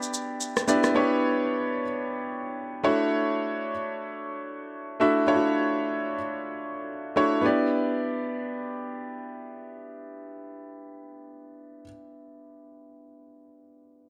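Light studio reverb frames this soulful, late-night amapiano excerpt in free time, where an up-front grand piano of intimate clarity, long sustain and audible action noise plays accompaniment through Em7 and Dmaj9 chords, while a layered electronic shaker and rim click, re-recorded in a small room, sound only in the opening 0.9 seconds.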